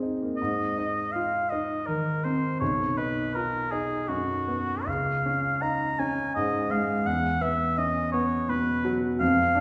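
This impressionist classical duo for oboe and grand piano, taken from a longer piece, has a luminous, dreamy mood, moving at 82 BPM in 3/4 with uneven beats and a rubato feel. The concert grand opens the passage at 0.0 s with a smooth, vintage accompaniment rich in deep bass. At 0.4 s the oboe enters up front with a soft attack and light vibrato, singing a classical-style solo melody over chords that drift from Ab6 through B and Db to Esus2, all bathed in the wet reverb of a recital hall heard from further back in the room.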